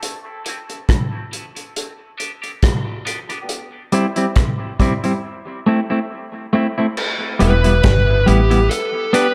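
A clean, hollow-bodied electric guitar provides the accompaniment in this meditative, hypnotic dub reggae excerpt, its compressed, fingered chords passing through a filter sweep and dub echo across the first 7.0 seconds. Beneath it, a vintage acoustic drum kit with a rolled-off top sets a lightly swung feel, using dark cymbals, a tight kick, a medium-tuned snare, rim clicks, hi-hat and crash. The harmony cycles through Em, G, C and Am before returning to Em as a new section begins. At 7.4 seconds a fuzz lead guitar joins with a distorted, picked line soaked in dub echo. At the same moment a deep, round, foam-muted fingered bass enters and sits loudest in the mix, briefly anchoring the low end. The echo-heavy mix carries light reverb and a small-room ambience, and the recording is cut from a longer piece.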